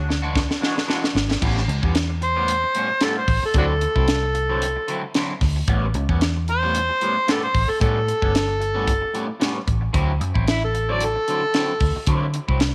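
An overdriven, gritty harmonica with slapback echo carries the up-front melody with tongue slaps and scooped notes in this rollicking straight-eighth soul blues at 113 BPM, cut from a longer piece, opening over a brief mellow horn chord that ends at 1.0 s and a drum fill from a tight funk kit with a high-tuned snare, while a dark, round, foam-muted fingered bass and a twangy, slightly broken-up electric guitar playing phased stabs move through E9, A9 and D9 in a small room.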